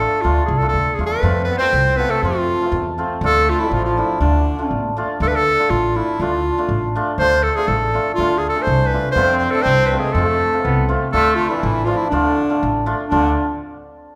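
Klezmer in a straight 2/4, festive and soulful, where a bright, close-miked clarinet carries the melody up front over a shimmering, ringing hammered dulcimer and a woody, thumpy pizzicato upright bass, while a distant, roomy trombone adds a brilliant second line from 1.5 to 4.9 seconds and again from 9.1 seconds, all set in a church or concert hall with a wet recital-hall reverb, in a section cut from a longer piece.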